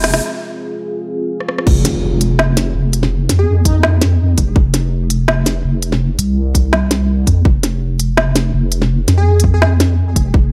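A dark, detuned ambient pad on an F minor chord, a rising sound effect, a short drum fill and a deep, chorused wobble bass open this tense, heavy half-time drum and bass excerpt at 166 BPM, building toward the drop. At 1.7 seconds an impact hits as a hard-clipped electronic kick enters up front alongside the organic electronic kit, with its woody snare, crisp hats, rim clicks and crashes, lightly swung over the sustained, compressed bass. A punchy, catchy plucked lead with vibrato, a moving filter sweep and tape echo flickers in briefly at 3.4 and 9.2 seconds, all set in a light digital ambience.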